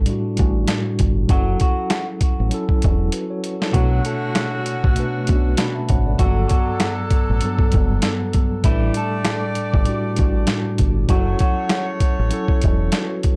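A dark, lightly reverberant production gives this cut from a longer boom-bap hip-hop piece a moody, dusky character at 98 BPM in 4/4, with the 16ths swung. A mellow, clean tine electric piano sits up front with a cassette-tape tinge and the sound of its built-in speakers, carrying the harmony through A7sus4, F#m7, Bm9 and Gmaj9. Underneath, a round, deep fingered dub bass holds the low end while a gritty, compressed sampler-style kit, re-recorded in a large room, punches forward with a thumpy kick, medium-tuned snare and hi-hat, including a short fill at 3.1 seconds. From 1.3 seconds, a slightly broken-up, lo-fi electric guitar plays the melody quietly through a small old amp, wrapped in plate reverb and delay. A punchy, distant saxophone section adds clear ensemble stabs with delay from 3.7 seconds, lending the warm groove a roomy, pop-style accent.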